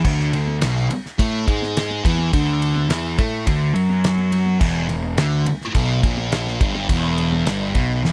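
Psychedelic rock with a trippy, hypnotic pull, this straight 4/4 excerpt rides a thick, double-tracked fuzz guitar riff up front with distortion and phaser, a fuzzy overdriven picked bass underneath, a damped 70s kit with fat snare, tight kick, crash and ride, and very quiet, bright, high-tuned congas entering at 0.5 seconds, all in a dry space with little reverb as the D5 chord shifts to E5 at 4.6 seconds.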